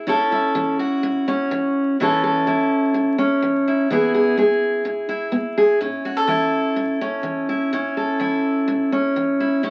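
Country piece in A major at 126 BPM, easygoing and nostalgic, with a bright picked steel-string acoustic guitar playing solo and up front from 0.0 to 9.7 seconds over A, E and back to A, heard in a moderate club ambience through the crackle of a very old 78 rpm record, cut from a longer piece.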